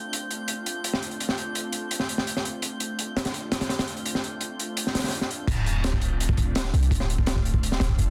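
Dense and heavily limited with little reverb, this dark, nostalgic drum and bass piece in a jungle vein opens on an ethereal, detuned pad with vintage sampler grit and a faint, glassy harmonics texture drifting behind it, over a crunchy, up-front breakbeat kit with a high-tuned snare, punchy kick and dark cymbals, until the drop at 5.5 s brings in a deep, boomy 808-style bass with tube saturation alongside a very quiet electronic sub drop.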